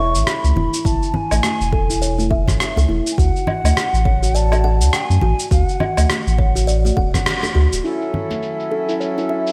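A hollow bamboo bansuri carries the melody with vibrato and tongued notes over fingertip-plucked, woody kalimba arpeggios softened by a low-pass filter, delay and slapback echo, in this mystical, warm organic downtempo excerpt with a swung sixteenth-note feel. A deep, round sine sub bass pumps up front beside a punchy, layered electronic kick. A gritty, tape-toned electronic shaker, rim click and woodblock kit and bright, close congas and bongos played with hard hands fill out the groove, with a band accent at 7.3 seconds, and at 7.8 seconds the bass stops as a reedy, breathing harmonium enters under a filter sweep on the drums, the whole mix set in a lush hall reverb with a big arena sound.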